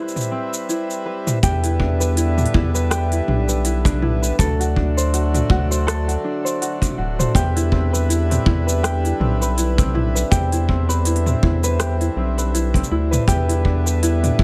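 A dry sound with little reverb carries this short folktronica excerpt, pastoral and delicate at 81 BPM in 4/4 with a gentle swing on the sixteenths, set in C lydian. A reedy, breathing pedal harmonium holds sustained chords while a light, thumb-plucked tenor ukulele plays arpeggios, its tone roughened by vintage 12-bit sampler grit and trailed by tape echo. An organic electronic kit of cabasa, smooth hi-hat, rim click and toms sits in a small room from the opening moments, through a brief break. At 1.4 s a round, dark analog bass arrives up front, deep and sustained with a fast attack, alongside a tight, distant kick with roomy ambience. The harmony moves from Cmaj7 to Em7 and D7, then back to Cmaj7 before returning to Em7 near 13.3 s.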